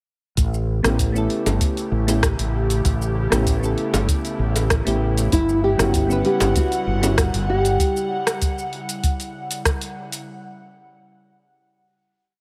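A straight 4/4 groove at 97 BPM drives this relaxed sunset chillout piece in E dorian, built on a soft, deep electronic kick and an overdriven deep house kit of hi-hat, rim click and shaker, with tight, high-tuned bongos and a round, punchy fretless electric bass in a dotted rhythm, while mellow electric-piano-like synth keys play syncopated rootless chord stabs with chorus and tape echo over an airy, breathy pad with vintage 12-bit sampler grit, and a dark, thumb-plucked nylon-string guitar enters at 5.3 seconds with a delayed melodic motif, all in light reverb.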